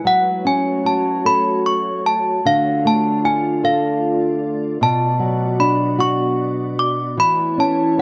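A nylon-string guitar and a glassy FM pad open this short cut from a longer children's lullaby, with desk bells entering at 0.1 seconds to carry the melody. The mood is innocent and tender, moving at an unhurried 50 beats per minute in a gentle 6/8 lilt. The thumb-plucked guitar sits up front with a dark, boxy character and the crisp sound of fresh strings, while the ethereal pad hovers quietly behind, its slow-attack chords thickened by ensemble chorus and their own reverb. Close and bright, the bells ring clearly through a plate reverb, slightly out of tune with a charming clanky edge. The harmony drifts from F#m to Dm, then Bm, settling on A/E near the close. A modest small-room ambience wraps the whole lullaby in an intimate space.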